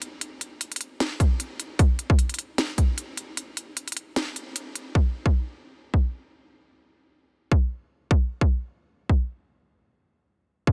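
Future bass at 152 BPM in 4/4, with a half-time feel, light swing on the sixteenths and a lush, emotional mood, heard in a short cut from a longer piece. An up-front trap kit of sharp snare and crisp hi-hats plays from the start and stops at 4.8 seconds, while a hard-clipped electronic kick enters at 1.2 seconds, drops out briefly before the second section begins at 5.0 seconds, then carries on to the end. The sound is dry, with little reverb, in a dense, heavily limited modern master.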